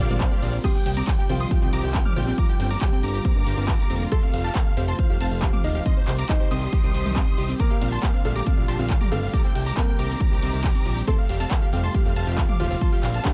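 A straight 4/4 pulse drives this emotional, driving stretch of uplifting trance, with a heavy, overdriven electronic kick sitting up front and a layered techno drum kit of smooth hats, handclaps, ride, crash and toms arriving just after the start. Beneath it, a fat, nasal analog bass built from detuned sawtooth and square waves holds the low end, saturated and sustained, and the bass, synths and grand piano all breathe with sidechain pumping against the beat. A huge, euphoric supersaw lead carries the melody, bright and compressed, trailed by dub echo, while a dark, mellow grand piano shadows it in the same register through a delay. In the background, a lush detuned pad with slow attack and chorus sustains the chords, and a punchy, wave-folded unison pluck spins arpeggios with its own delay. A faint electronic swell opens the passage, and from 0.6 seconds a soft, felt-muted upright piano adds an intimate second line with audible action noise and tape echo, as the harmony cycles through C minor, G minor seventh, F and B-flat sixth in a dry, close-sounding mix.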